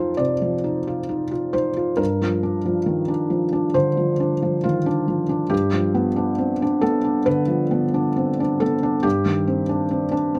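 Set in 4/4 at 68 BPM, the rhythm moves with a rubato feel, letting each phrase breathe and settle. This brief fragment of a longer neoclassical minimalist piano piece carries a melancholic, wistful mood, tuned slightly bright at A4 = 442 Hz. A felt-muted upright piano plays alone throughout its 10.4 seconds, ranging from F2 up to D5, with a soft, mellow and intimate tone. The instrument sits up front in close, detailed miking, so the audible action noise of its mechanism becomes part of the texture, framed by light reverb. The harmony drifts from F7 to Gm7, reaches G7 at 5.5 seconds, and comes to rest on Cmadd9/G at 9.0 seconds.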